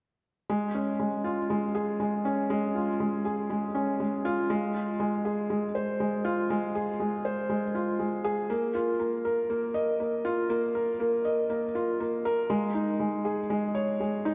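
A soft, intimate sound opens this short electronica excerpt, where a felt-muted upright piano plays alone from 0.5 to 14.3 seconds, its mellow, up-front tone carrying audible action noise and the thin cushion of felt, with delay trailing its notes through a wet concert hall reverb to create a moving, hypnotic mood.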